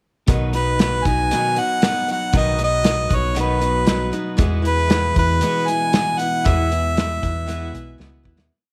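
A clear harmonica sits up front, carrying a motif-based melody in sentence-like phrases from 0.5 to 8.0 seconds, its tone touched by tape echo. This short, complete piece is folk rock and heartland rock in E major at 117 BPM in a straight 4/4, with a nostalgic mood. Beneath it, a picked steel-string acoustic guitar strums eighths on open chord shapes, while a twangy, compressed clean electric guitar rings chords in the background with a subtle chorus. A round, dark hollow-body short-scale bass, fingered and amped, stays locked to the punchy kick of a natural country drum kit playing a ballad groove with hi-hat and a medium-tuned snare in a small room. The single verse moves from B to E at 4.4 seconds, fades out from 6.5 seconds, and closes on a drum fill, all set in light reverb and studio ambience.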